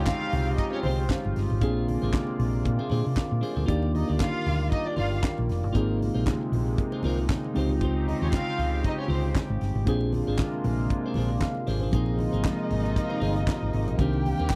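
A dry, close studio sound with a 1970s character frames this celebratory, glamorous disco cut at 116 BPM, swung lightly on the sixteenths, where a round, punchy hollow-body bass and a tight funk kit with high-tuned snare, handclaps and hi-hat sit up front while very quiet, low-tuned congas patter beneath. A worn, slightly out-of-tune tine electric piano and a clean, picked electric guitar comp through lush chords such as Dbmaj9#11 and Bb9, a shimmering chorused pulse-width pad holds sustained harmony, and a bowed studio violin section with expressive vibrato carries a second line. The electric piano slips in a fill at 11.2 seconds before the harmony shifts to Bb9sus4 and Cm7 in the closing bars.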